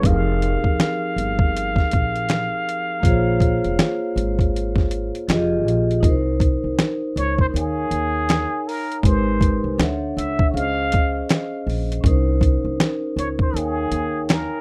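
A rough home-demo mix with light reverb frames this hazy, nostalgic lo-fi hip hop cut from a longer piece, set at 80 BPM in F minor with a 16th-note swing. A gritty, compressed sampler-style kit sits up front with a thumpy kick, fat snare, hi-hat and finger snaps, while a woody pizzicato upright bass on gut strings and a ringing, metallic vibraphone, struck with medium hard mallets, motor off, in a boxy small room and softened by cassette tape and a low-pass filter, carry the chords from Fm11 through Abmaj7, Dmaj7 and Dbmaj7. Over them a filtered, breathy trumpet with plunger mute plays the jazz-style solo melody with wah-wah, light vibrato and scooped notes, shifting into a new passage around 6.0 seconds.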